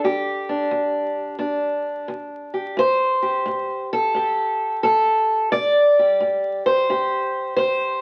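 A swung 4/4 at 88 BPM carries this brief, smoky and mournful excerpt of acoustic country blues, moving from Em7 to Am7 at 2.8 seconds. A lone fingerpicked steel-string parlour guitar sits up front, its fresh strings sounding bright yet boxy, with audible finger squeak as it ranges from E2 to D5. Light reverb and the crackle of a very old 78 rpm record frame the performance, tuned slightly off standard at A4 = 437 Hz.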